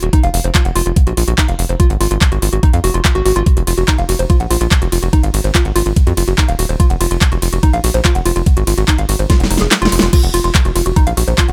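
Psychedelic trance in full drop mode, this driving, alien passage is cut from a longer piece and runs at a straight pulse. An up-front electronic kick, knocking and tape-warm, anchors the groove, while a tight sequencer bass blends sawtooth and square waves into a punchy, fast-attack, decaying filter pluck in the low register. Above them, a woody, wave-folded pluck carries the riff, its organic, percussive tone built from triangle and sine layers with a noise layer and sub octave, and it is dark in character, colored by chorus, delay and sidechain pumping. The big-room dance kit adds a huge snare, metallic hats, handclaps, ride and crash, with a layered sound re-recorded in a small room. A drum fill arrives at 9.3 seconds, and the kick drops out from 9.7 to 10.1 seconds before the drop resumes. The mix is dry and loud, with little reverb.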